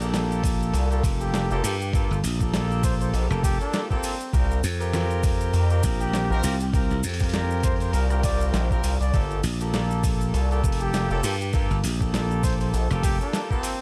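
Glitch hop at 100 BPM in G minor with a swaggering, gritty swing: a thumpy, pitched-down electronic kick and a compressed, tape-toned boom bap kit of hi-hat, rim click and snare drive the groove alongside faint grainy maracas. Beneath them, a growly, punchy slap bass pairs with an aggressive, saturated synth bass built from sync and resonant waveforms. Above, a tight horn section fires stabs coloured by 12-bit sampler grit, sidechain pumping and digital delay, and a smooth, mellow solo trumpet with light vibrato and its own delay enters at 1.2 s. The whole excerpt moves from Gm9 to C7sus4 and back in a dry, close sound.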